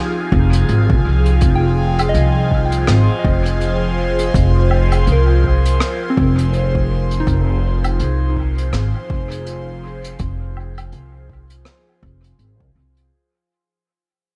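A lightly swung sixteenth-note groove in 4/4 carries this meditative, deep ambient dub, which holds a single Fm7 chord throughout. A growly, woody upright bass sits up front, plucked on steel strings, alongside an overdriven electronic kick with a layered, produced, deep tone. A vintage brush kit with a rolled-off top adds hi-hat, rim click and woodblock through dub echo. Above them, an airy, breathy pad with a noise layer sustains chorused, phased chords, while a pure, gentle FM bell arpeggiates in the background through tape echo. The whole passage sits in a light small-room reverb and begins fading at 5.3 seconds until it ends at 13.1 seconds, cut from a longer piece.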